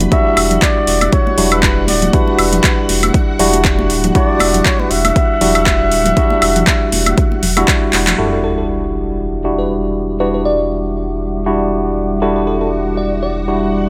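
A light reverb and digital ambience frame this hypnotic, smooth deep house passage, set at 119 BPM in E minor with a swung sixteenth feel over an Em9 chord. A worn, slightly out-of-tune tine electric piano plays up-front stabs with dub echo, pumping alongside a round sine sub bass, while an overdriven electronic kick and a layered kit of metallic hats, handclaps and woodblock drive the groove, with bright, high-tuned congas tucked behind. A bucket-muted trumpet carries the melody with a raspy, growling jazz voice, scooped notes and vibrato, trailed by dub echo, as a shimmering vintage string machine hovers in the background. After a drum fill at 7.9 seconds and a band accent, the drums, congas and strings drop out at 8.2 seconds, where a sub drop impact lands and a hollow, flute-like pad enters as a filter sweep unfolds. A sparkling, bell-like FM electric piano with chorus, phaser and delay takes over the melody until 13.4 seconds, and the strings return at 12.2 seconds to close the fragment.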